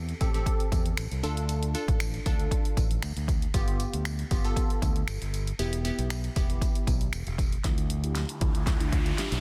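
Bittersweet and energetic, this short dance-pop cut at 117 BPM rides a punchy, up-front deep house drum kit with a fat snare, a bright fingered electric bass and a crystalline, detuned wavetable pluck, both with sidechain pumping, over an Am7, Dm, G7 and Em progression with a jingly tambourine in the background, until a drum fill and build-up from 7.6 seconds brings a very quiet warbling pluck arpeggio, an electronic riser and an ethereal FM pad on Dmadd9 in a dry, dense, heavily limited mix.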